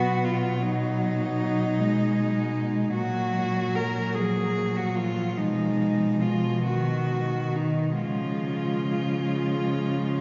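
Four bowed cellos sound together from the very start, opening a short, serene classical passage cut from a longer piece for cello ensemble. It moves in a slow, rubato 12/8 at roughly 43-53 BPM in dotted quarters, tuned to A4 = 441 Hz, with the harmony passing from B to F#/A#, then B6 and C# at 8.0 seconds. The melody cello sits up front with an airy, sul tasto tone, soft attack and light vibrato, while a second cello of similar gentle colour shades an inner line further back. Beneath them, a dark accompanying cello with a smooth top and vibrato fills out the middle, and a woody, up-front bass cello anchors the low end. Each part is a single, closely heard player, yet all four bloom into a cathedral-like reverb with a 4.3-second decay, and the high end is rolled off, giving the sound a hushed, mellow glow.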